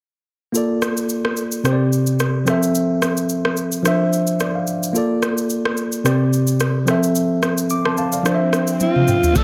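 Breezy and sunny, this afrobeats excerpt rides a lightly swung groove, with a worn, slightly out-of-tune tine electric piano up front, voicing lush major-seventh and suspended chords over an electronic afro-pop drum kit of knocking kick, rim click, shaker and toms, plus a piano fill midway. From 7.8 seconds a swell and downlifter enter in the background, and at 8.8 seconds a breathy, raspy alto saxophone with vibrato steps forward for a brief solo over a drum fill. At 9.4 seconds a punchy sine sub bass lands with a pitch-drop attack, joined by very quiet, bright congas, all in light digital ambience.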